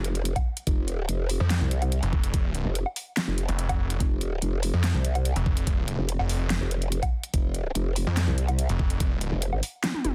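A dense, heavily limited modern master with little reverb pushes every part up front in this aggressive, chaotic heavy wobble dubstep, running at 144 BPM in 4/4 with a half-time feel and tuned to A4 = 439 Hz. From the opening, a growl bass churns between F1 and C2, its wobbling, formant-filtered sine tone saturated, compressed and thickened with chorus and overdrive. At 1.4 s a snarling distorted saw bass joins, reaching from F1 to F2 with detuned unison sawtooth and square layers, a resonant moving notch and hard distortion. The overdriven dubstep drum kit, heard in studio ambience, delivers a huge snare alongside handclaps, hi-hat, toms and woodblock, while a knocking electronic kick enters at 0.4 s. A drum fill at 9.8 s closes this cut from a longer piece.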